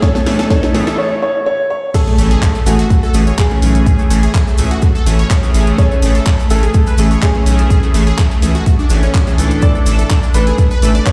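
Expansive and euphoric, this progressive house excerpt at 125 BPM in A major opens on an Amaj7 chord with a brief build-up carried by a very quiet electronic riser and a drum fill, then drops at 1.9 s on the riser's impact as a grainy, close cabasa joins in the background. A punchy, up-front layered kick and a pop kit of fat snare, handclaps, hi-hat and crash drive the groove, while a clear grand piano melody with delay floats over bright, lush detuned sawtooth pluck arpeggios carrying phaser, tape echo and sidechain pumping. Glossy, retro chorused polysynth stabs with 12-bit sampler grit pump beneath, a round, deep analog bass arrives at 2.2 s, and the whole mix rings in a stone room over a big sound system.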